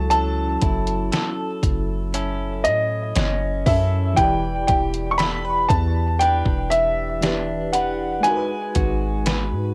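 The beat moves at a slow 59 BPM in a straight 4/4, carried by a detuned 8-bit digital drum machine with a thumpy kick, a medium-tuned snare and hi-hat, its tape-softened sound placed up front, entering at 0.1 s. This short cut from a longer contemporary R&B piece has a sensual, late-night mood, built over a progression that moves from F#m7 to Em7 and then to G#m7 at 8.2 s. A deep, boomy 808-style bass with a sine-like tone and a mellow decay sits close alongside the drums. An intimate baby grand piano carries the melody in its upper register, with audible action noise, a plate reverb and tape echo giving it space. Underneath, an FM electric piano with tremolo adds dark, full-bodied chords with a faint noise layer, while a clean, compressed, direct-recorded electric guitar plays picked arpeggios through cassette tape, plate reverb and tape echo. The whole piece has a homemade cassette character and a modest booth ambience that keeps the sound close and cozy.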